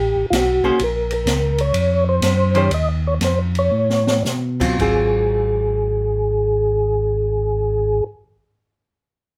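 Lightly reverberant and up front, this greasy, bluesy soul jazz organ trio fragment in a swung 4/4 sets a flute-like tonewheel organ melody with percussive attack, chorus vibrato and slow rotary speaker over a round, lightly overdriven organ bass line, while a clean, hollow-bodied archtop guitar comps and an acoustic kit with dark cymbals, a high-tuned snare and a boomy kick joins at 0.3 seconds. The tempo slows from 0.8 seconds to 4.8 seconds, and a drum fill at 3.7 seconds leads into the next section at 4.8 seconds.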